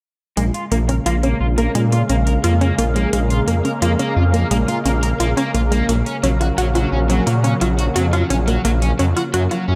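A thick, up-front detuned saw bass with a filter sweep anchors this nostalgic, cinematic synthwave excerpt, joined by bright pluck arpeggios with tape echo, a crunchy double-tracked overdriven guitar riff under lush chorus, and overdriven metallic electronic hi-hats, while a silky, string-like analog pad with its own filter sweep enters at 0.9 s, all in light reverb as the harmony moves from Bbm7 to Gbmaj7/Bb at 5.9 s.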